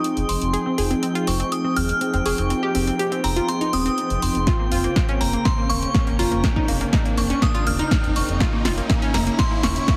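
A crystalline FM synth bell melody opens over a warbling, detuned analog pad with 12-bit sampler grit and a round, filter-plucked arpeggio, all pumping against the beat at 122 BPM in this dreamy, driving progressive house build-up cut from a longer piece. Tape-warm hats and a punchy snare play from the start, a deep, dark sawtooth bass slips in just after, and a calm, glassy harmonics texture drifts in the background. A riser enters at 1.4 seconds as filter sweeps run across the pad and bell. At 4.5 seconds an up-front layered kick arrives with a drum fill as the chords move from Fm7 to Bbmadd9, all under moderate room reverb and a heavily compressed, radio-like sheen.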